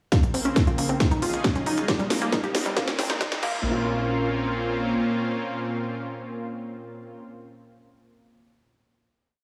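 Bittersweet and driving, this short uplifting trance piece spends its first 3.6 seconds in a build-up, where a heavy four-on-the-floor electronic kick and a techno kit with a cracking snare, smooth hats and crash cymbal run a drum fill. A round analog pluck spins a 32-step arpeggio under a filter sweep, with tape echo and cassette color, while a tight sequencer bass rolls in sixteenth notes in the background and a very quiet riser rises from 1.3 seconds. From 0.3 seconds the lush, thick, warbling unison pad, with its vintage 12-bit sampler grit and sidechain pumping, sustains its chords, and when the final hit arrives at 3.6 seconds it carries on until 7.2 seconds in a moderate room reverb, joined briefly by the pluck until 3.8 seconds and the bass until 4.9 seconds.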